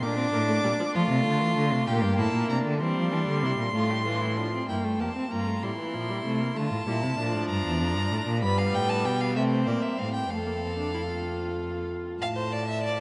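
Classical baroque-style fugue for string quartet in 6/8, joyful and elegant, in which a focused first violin carries the melody above the second violin's smooth-topped inner line, a close viola with soft attack and expressive portamento supplies accompaniment until 12.2 s, and an up-front, even cello anchors the bass, all four bowed with vibrato and set in a vast, echoing cathedral reverb that softens the highest frequencies in this short passage cut from a longer piece.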